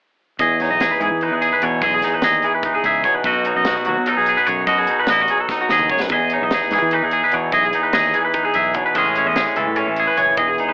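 Math rock with a midwest emo tint, this playful, intricate cut from a longer piece moves at 294 BPM in eighths through a straight 7/8 in E major. Two bright, twangy clean electric guitars, one comping and one picking high arpeggios, ride up front over a growling overdriven fingered bass and a crisp, airy fusion kit with a high-tuned snare and punchy kick. They move from Emaj7 to B7, back to Emaj7 and on to Amaj7, with a drum fill at 5.5 seconds, all steeped in the dry sound of a cassette home recording with an AM radio sound.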